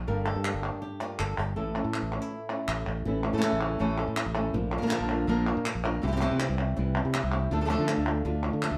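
Up front and fingerpicked with audible finger squeak, a flamenco guitar carries a fiery, intense melody at 161 BPM in A phrygian dominant, over a bright, growly fingered electric bass, a darker second flamenco guitar playing stabs, and crisp, band-limited palmas hand claps entering at 0.3 seconds, all sharing a moderate room reverb through chords moving from Gm and A to Bb, C and Dm in this short cut from a longer piece.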